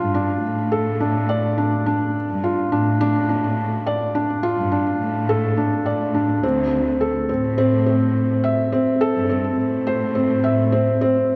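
Melancholic and hypnotic, this short excerpt of piano and strings electronica moves at 105 BPM in a straight 4/4, in D minor. A felt-muted upright piano sits up front with a soft, mellow riff touched by delay. Beneath it, a bowed cello section holds the bass with gentle vibrato and a sul tasto softness, close and intimate. The harmony moves from Dm to Am/D at 6.4 seconds, and the whole passage is bathed in a lush concert hall reverb with a long tail.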